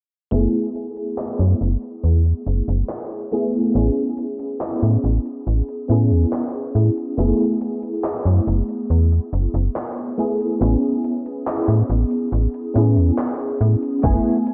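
Nostalgic and dreamy, this vaporwave excerpt drifts at 70 BPM in A major, with a lush, mellow FM electric piano and soft pad layer, thick with ensemble chorus and tape echo, moving between F#m11 and Amaj7 over a snappy, metallic slap-like FM bass sitting up front. A detuned 8-bit drum machine supplies faint handclaps and hi-hat, carrying the ambience of a large room, while a filter sweep runs through the whole passage and worn cassette-tape warble with pitch drift colors the sound. At 14.0 s a bright, clean, direct-recorded electric guitar riff with sampler grit appears briefly alongside a thumpy electronic kick.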